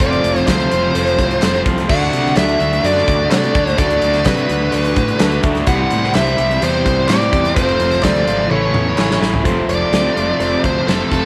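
Sunny and confident, this straight 4/4 classic rock excerpt is led by a dark, smooth overdriven lead guitar with slapback echo up front, over a raw, bright garage guitar riff, a crunchy background guitar riff with tremolo, and a fuzzy fingered electric bass. A huge arena drum kit with bright cymbals, a punchy kick and a pumping room sound drives it. A reedy electric piano sits tucked far back throughout and adds a brief fill at 5.0 s, while crisp, very quiet group handclaps join from 0.5 s. After a drum fill, the lead guitar breaks into a solo at 9.5 s, with the mix sitting in a moderate echo chamber reverb.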